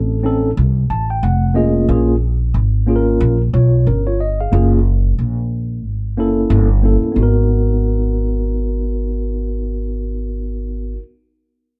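Smoky and cool, this jazz-hop excerpt settles into a lazy swung groove in 4/4, built on just a mellow tine electric piano bathed in plate reverb and a woody, pizzicato upright bass sitting up front in the mix. The electric piano voices rich extended chords, slipping in a brief fill at 0.6 seconds, while the dark steel-strung bass anchors the low end. The production is dusky and soft-edged with a light room reverb, and the harmony drifts through a diminished passing chord before landing on a minor ninth as a new section begins at 7.2 seconds.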